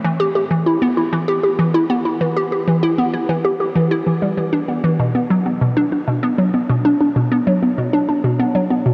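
A hollow, nasal square-wave pluck plays alone and up front from the start, its detuned, bouncy notes spanning B2 to G4 with a fast attack, short decay, a noise layer and a moving notch, colored by chorus and tape echo. This mysterious, hypnotic ambient piece moves at 97 BPM in a straight 4/4 and is cut from a longer work, running just 8.9 seconds. A huge, wet reverb with an 8.6-second tail surrounds the pluck, and the worn cassette sound adds a warbling pitch drift.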